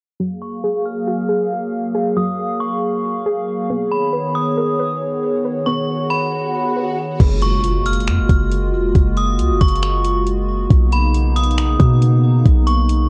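A lo-fi home-cassette sound with light reverb frames this floating, blissful cloud-rap hip hop piece at 137 BPM in half-time F# major, where a hollow, flute-like pad with sidechain pumping sustains F#maj9 and Bmaj9 chords under a dark, round, filter-swept plucked arpeggio with tape echo and a ringing, inharmonic FM bell melody with phaser, while a background swell builds to an impact at 7.2 seconds, when the pluck stops and a boomy 808-style bass enters alongside an up-front R&B drum kit of soft kick, metallic hi-hats, finger snaps and crash cymbal.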